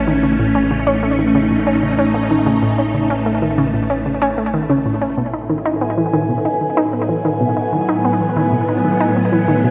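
Soaked in a dreamy plate reverb, this luminous, cosmic slice of sequencer-driven ambient space music at 94 BPM sets a swirling, bright phased string machine holding sustained chords against an up-front, round, nasal analog pluck riff with 12-bit sampler grit and delay, while an evolving analog drone bass stops at 5.1 s and a resonant, bubbling stepped-filter texture enters at 5.2 s as the harmony moves from Aadd9 to Bsus4/A.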